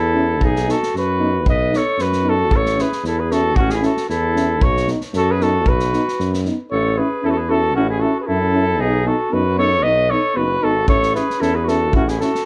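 A warm, distant flugelhorn with plate reverb carries the melody from the start of this wild, virtuosic Balkan brass band excerpt at 114 BPM in 2/4 with a light swing, joined at once by a clear, soft-attacked clarinet on the second line and a clear, up-front tuba holding the bass. A dark euphonium and a mellow, smooth-topped trombone sit in the background as accompaniment, both with light vibrato, over harmony that alternates between B and A. A roomy acoustic drum kit played with bundle sticks, with kick and snare, comes in at 0.4 seconds, drops out at 6.5 seconds and returns at 10.9 seconds, all within a moderate studio room and a dark production.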